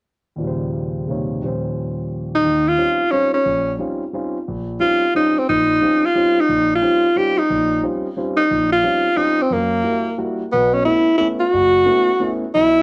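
Jazz waltz at a brisk 178 BPM in swung 3/4, set in Eb mixolydian and tuned to A4 = 436 Hz, with a searching, hypnotic mood in this short fragment cut from a longer piece. A warm concert grand piano with deep bass opens the accompaniment at 0.4 s on an Eb13 chord, and a clear, punchy tenor saxophone enters up front at 2.3 s with a forceful solo full of vibrato, scooped notes and a smooth top. Both parts carry cassette tape coloring and plate reverb within a short, wet studio ambience, and the harmony moves through Gb7b9 before settling on B9sus4 at 10.5 s.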